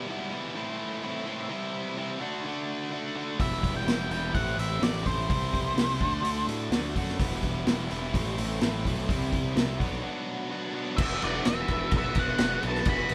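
Swaggering and gritty, this classic rock passage in E minor at 127 BPM opens with two picked overdriven guitars, one biting and one bright, playing the riff together before a punchy fuzz bass, an up-front vintage kit with a tight kick and dark cymbals, and a dark octave-fuzz lead melody arrive at 3.4 seconds, with the lead falling silent and then returning at 11.0 seconds after a brief break, all captured as a band playing live in one room with moderate reverb.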